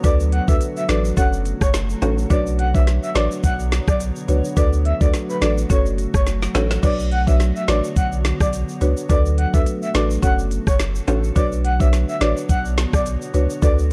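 A knocking, up-front electronic drum kit with a woody snare and smooth hats drives this tough, hypnotic dancehall excerpt at 106 BPM in B minor, joined by a deep sub bass with a pitch-drop attack, a dry, buzzing marimba pumping against the kick, a glassy, ethereal FM pad under ensemble chorus and its own reverb, a breathy flute-like lead with vibrato and delay, and close, soft-handed tube shaker and timbales, all circling D6, F#m and Bmadd9 in a dark production with a drum fill at 6.3 seconds.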